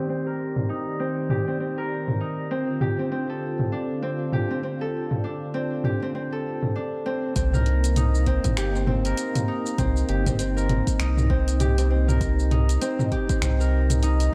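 A smooth, detuned sawtooth pad with chorus, 12-bit sampler grit and sidechain pumping and a ringing, fingerpicked Celtic harp arpeggiating through delay open this meditative, hypnotic organic downtempo piece together at 99 BPM with swung 16ths in C dorian, both under a filter sweep that lasts until 7.4 seconds over Ebmaj7 and Dm7; an up-front, tape-toned deep house kit of finger snaps, hi-hat, shaker and low-pass-filtered toms enters at 0.6 seconds, and a round, wave-folded analog bass with sidechain pumping and a deep, layered electronic kick arrive at 7.4 seconds as the harmony settles on Cm7, the whole set in a dark production with light digital reverb.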